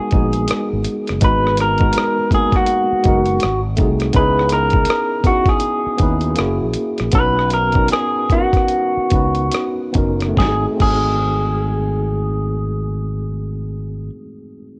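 A slightly broken-up electric guitar played through a small old amp carries the melody up front, its fingered, compressed tone softened by a lo-fi cassette haze. This soulful, smooth piece of neo-soul and R&B is in G# minor at 70-82 BPM in 4/4, with a swung sixteenth feel and a tempo that slows through its middle stretch. Beneath it, a worn tine electric piano, slightly out of tune and lightly overdriven through its built-in speakers, moves from G#m9 and G#7b9 through C#m9, F#9 and Bmaj9 back to G#7b9. A bright, punchy fretless electric bass anchors the low end, and a gritty, sampler-style drum kit with a thumpy kick, medium-tuned snare, rim click, hi-hat and crash stops at 11.1 seconds. The home recording on cassette carries digital ambience, and this cut from a longer piece reaches a brief second section at 10.4 seconds.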